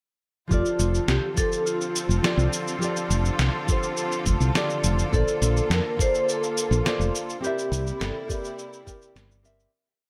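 At 0.5 seconds the whole band comes in together on a sunny, smooth sunset chillout groove in F major, moving at 104 BPM in a straight 4/4 over an F6 to Bbmaj7 to C7 progression. A metallic, ringing vibraphone played with medium hard mallets carries the melody in short call-like motifs, its fast motor vibrato shimmering through tape echo. Underneath, a full-bodied nylon-string guitar is fingerpicked in deep classical style, holding spread chords with syncopated pushes, also colored by tape echo. A rich, biting symphonic string section sustains close, intensely bowed chords with light vibrato. A woody, round fretless electric bass with a hollow-body tone sits up front with a syncopated riff and tube saturation. In a sampler-style, tape-warm kit, cabasa and a fat snare play a light lounge beat over a soft, gritty, thumpy kick, all in a light reverb, before the piece fades out from 6.7 seconds to its close at 9.7 seconds.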